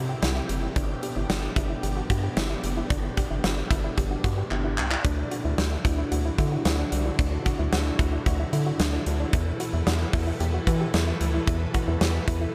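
A vintage string machine voiced as violas lays down slow-attack sustained chords under its ensemble chorus from the very start of this cool, melancholic synth-pop excerpt, alongside a rubbery, hollow square bass and a soft, nasal pluck tucked in the background playing arpeggios through chorus and analog delay. A punchy arena drum kit with handclaps, hi-hat and a medium-tuned snare sits up front in a pumping hall from 0.2 seconds, playing a fill at 4.5 seconds as the harmony moves from C and G to Dadd9 and then Esus4. The whole moves at a straight 112 BPM in 4/4 within an echo-heavy mix and light small-room reverb.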